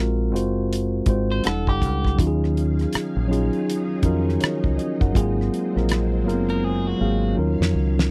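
A mellow tine electric piano carries the accompaniment in this smooth, soulful neo-soul and R&B clip, sitting up front beside a round, dark fingered dub bass and a damped 70s drum kit with a fat snare, tight kick and rolled-off top that swings its sixteenths and closes with a fill from 6.6 seconds. A picked, compressed electric guitar at the edge of break-up adds a quieter second line from 1.3 seconds, and a lush, vintage sawtooth string machine with ensemble chorus drifts in at 2.2 seconds with slow-attack sustained chords. The sound is dry and close, like a 1970s studio, with very little reverb.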